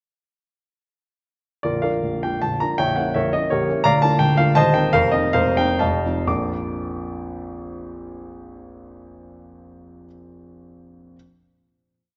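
A polished grand piano, sitting present and up front, carries this brief, complete classical piece alone, playing a tune over chords with an octave bass beneath. It is a romantic triple-time dance in Bb major with dotted rhythms, proud and graceful in mood, moving in 3/4 at a flexible rubato tempo between 118 and 182 BPM. The piano spans from a deep Bb0 up to D6, and its tone has a warm roundness. The harmony moves from Bb through a diminished colour and Cm7/Eb to F7sus4 and F7, with the pace slowing from 3.3 seconds before settling on a held Bb chord at 6.3 seconds. A moderate concert hall reverb surrounds the instrument, and the top end is gently rolled off, giving the sound a soft, mellow sheen until the piano's sound ends at 11.2 seconds.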